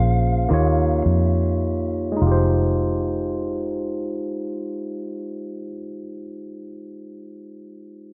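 Set in light reverb, this brief, slow R&B fragment in 6/8 and F minor (34-38 BPM in dotted quarters) feels yearning and sultry: a compressed fuzz lead guitar with tape echo touches a single F5 in the first 1.0 s, a barky, lightly overdriven tine electric piano sits up front on Eb9 moving to Fm9 and rings on to 8.1 s, and a round, foam-muted vintage fingered electric bass plays dark and amped until 5.7 s, while the opening slows down under a filter sweep.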